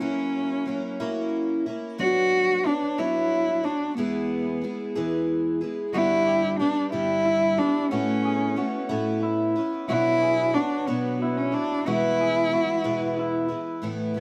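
Acoustic folk in a straight 6/8 at 61 BPM, nostalgic and hopeful, where an up-front bowed cello carries the melody with a nasal, boxy vibrato over a shimmering, octave-doubled picked twelve-string guitar with audible finger squeak, while from 5.9 s a dark, slightly broken-up electric guitar through a small old amp adds lo-fi, compressed arpeggios with harmonic tremolo, all in a close, detailed recording with moderate studio reverb, cut from a longer piece.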